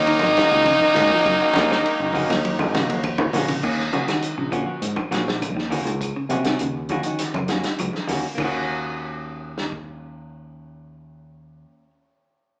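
A growling tenor saxophone leads up front in this intense, defiant afrobeat excerpt in Eb minor at 101 BPM. Its gritty tone carries a light vibrato, while a brilliant, punchy trumpet and a distant, raspy baritone saxophone fill out the second line behind it until 3.0 seconds. A drum fill runs from 2.7 to 3.6 seconds, and the harmony moves from Ab9sus4 to Ebm7 at 3.6 seconds. The vintage drum kit sounds muffled and lo-fi, with dark cymbals and a tight kick, while ringing congas with hard hands sit in the background alongside very quiet, woody claves. A round fingered bass runs underneath, joined by picked arpeggios from a clean electric guitar and fingered stabs from a hollow-body semi-hollow guitar that carries on to 11.9 seconds. The band plays live in one room with a moderate large studio reverb, heard through a small-speaker sound.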